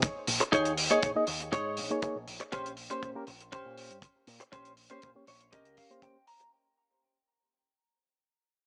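Heard through a small speaker in a lightly reverberant small room, this sensual, sleek nu-disco fragment fades out across its length. A dry, tight kick and an acoustic hi-hat sit up front under a dark, round, punchy picked bass with an envelope filter. A bright, compressed, clean electric guitar riff with lush chorus and digital delay adds a fill from 5.0 seconds. A mellow, reedy electric piano carries a filter sweep over Eb7sus4 and Bbm69 chords.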